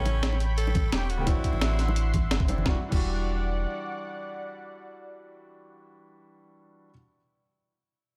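A raspy, growling tenor saxophone with light vibrato carries a jazz-style melody through delay for the first 2.3 seconds of this lush, melancholic liquid drum and bass excerpt at 173 BPM in E minor, opening on a drop over A9 and D9 before moving to Em9. An intimate baby grand piano with audible action noise plays accompaniment through digital delay, a thick, detuned sawtooth unison pad holds chorused, sidechain-pumped chords, and a deep, round sine sub bass sits up front. Gritty sampler-style breakbeat drums with a high-tuned snare, hi-hat and crash are soon joined by a thumpy, compressed kick re-recorded in a small room, while soft-handed bongos and congas ring in the background of a dry overall sound.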